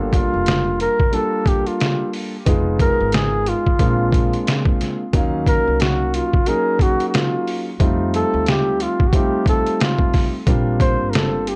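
A dark, mellow grand piano and a woody pizzicato upright bass with transformer saturation open this relaxed, swung jazz-hop excerpt, joined at 0.1 seconds by a gritty, pitched-down sampler-style drum kit with a thumpy kick placed up front, while a close-miked, breathy flugelhorn carries the melody with scooped notes and analog delay, all under light reverb and the warbling pitch drift of worn cassette tape.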